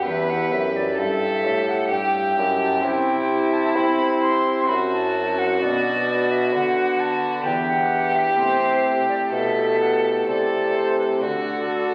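Heard through the crackle of a very old 78 rpm record and the wet bloom of a recital hall, this short slice of a baroque-style sonata movement in triple time feels radiant and dance-like. A pure, softly attacked silver flute carries the melody with vibrato over a chamber organ's light, chiffing flute stops, while a rich, smooth solo violin sits up front with a bowed second line and a warm bassoon supplies the bass with light vibrato. The harmony moves from Em through C, F#m7b5, Bm, Em7 and Am7 before settling on D at 11.2 seconds.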